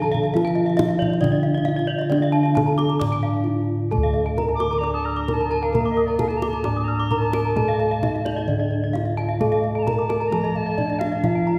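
Balinese gamelan in D pelog at 131 BPM, hypnotic and shimmering, cut from a longer piece: bronze metallophones carry a soft, padded-mallet melody, a lower accompaniment and two arpeggio lines whose paired tuning sets up beating shimmer, while close, round bossed gongs anchor the bass up front, a tight, dry kendang keeps time, a brief break falls at 3.2 seconds, and an airy, reedy alto recorder with vibrato and gentle chiff enters at 4.5 seconds as a second line, all set back in a wet concert hall.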